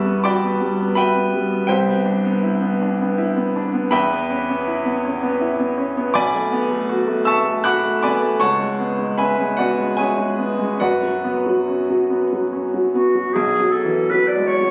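A rubato piece in 3/4, drifting between 69 and 84 BPM, opens this wistful, hazy impressionist duo, a fragment of a longer classical piece. An intimate baby grand piano carries the accompaniment up front from the start, its clear tone ringing with long sustain and audible action noise through harmonies such as Emadd9, Cmaj9 and Bm7 before settling on C#m7 and F#sus4. At 12.9 s a distant, roomy clarinet enters with a short solo melody just before a new section opens on B5 at 13.3 s, all caught on a phone in a recital hall whose wet reverb lingers for 1.7 seconds.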